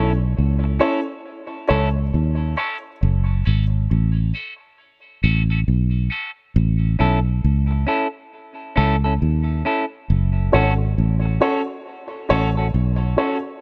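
A filter sweep opens this spacious, meditative reggae excerpt at 68 BPM, as a round, foam-muted fingered electric bass sits up front beneath a clean semi-hollow electric guitar and stabs from a dark, worn upright piano. The groove moves in 4/4 with a swung sixteenth feel in F# dorian, alternating between A and F#m chords. The bass sounds direct and amped, holding down the low end, while the fingered, hollow-bodied guitar provides the accompaniment further back in the mix, shaped by a high-pass filter and tape echo. The piano carries the same filtering and echo, its woody, slightly detuned tone marked by audible action noise and short sustain. It drops out at 3.6 seconds and returns at 10.5 seconds. Light reverb and a small room ambience frame the trio.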